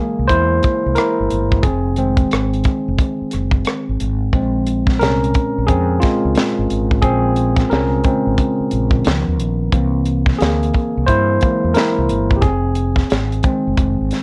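R&B and neo-soul at 89 BPM in Bb minor with a swung sixteenth feel, this smooth, late-night excerpt features a barky, clean tine electric piano taking the lead up front through a combo amp with plate reverb over chords moving from C7b13 through Fm7, Bbm9 and Db9, supported by a round, dark fretless electric bass and a tight funk drum kit with a high-tuned snare, rim clicks and hi-hat, all colored by worn cassette tape with warbly pitch drift.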